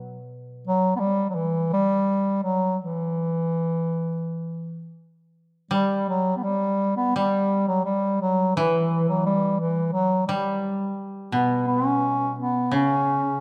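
In a free, rubato 4/4, this meditative, austere fragment of Japanese traditional chamber music opens with a brief, dry, woody koto played with fingerpicks before a soft-attacked bass clarinet takes up the solo melody at 0.7 seconds in a classical manner, up front, with the koto returning as accompaniment at 5.7 seconds for the second section, heard in a moderate concert hall reverb within a dark, warm production.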